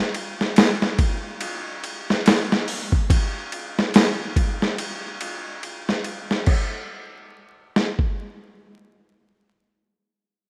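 A rough home-demo mix with vinyl crackle and light reverb frames this smoky, brooding trip hop fragment at 71 BPM in 4/4, with a 58% swing on the sixteenths. A dusty, sampler-style soul drum kit sits up front, compressed and overdriven, with a thumpy kick, medium-tuned snare, hi-hat, ride and crash giving it a gritty edge. The kit plays from 0.1 s, carries through a change of section at 6.5 s, and stops at 8.2 s.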